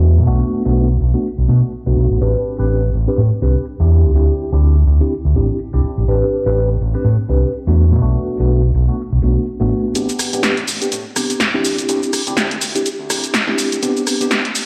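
Filtered disco house at 124 BPM in A dorian, this short cut from a longer piece feels nostalgic and funky, with a 16th-note swing giving it a loose bounce. A mellow tine electric piano carries the accompaniment through a phaser and low-pass filter, moving through Bm7, Am11 and D9sus4 chords. Underneath, an overdriven fingered electric bass sits up front with a round, amped tone, shaped by high- and low-pass filters. A filter sweep runs across the opening, and at 10.0 seconds a punchy analog drum machine enters with a dry snare, rim click, hi-hat and cabasa in small room ambience, driving a build-up to the end at 14.7 seconds. The whole mix sounds as if played on a big sound system in a bare room, bathed in large studio reverb.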